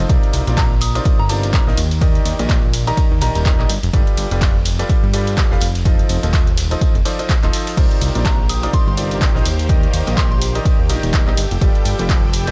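A bright grand piano riff, pumping with sidechain and delay, opens this bittersweet, energetic piano house excerpt in C dorian at 125 BPM, alongside a fat, detuned sawtooth bass and an up-front punchy electronic kick. An analog drum machine's handclaps, hi-hat, ride and crash, a very quiet soul kit's snare and ride, and a background tambourine fill out a swung 16th groove in a small room over Cm11, Ebmaj7, G9 and F7. A soft FM synth bell with chorus and delay adds a pure, high melody from 0.6 s. At 7.8 s a silky analog string pad brings in sustained chords, while a clear, smoothly bowed symphonic string section, also sidechained, adds texture.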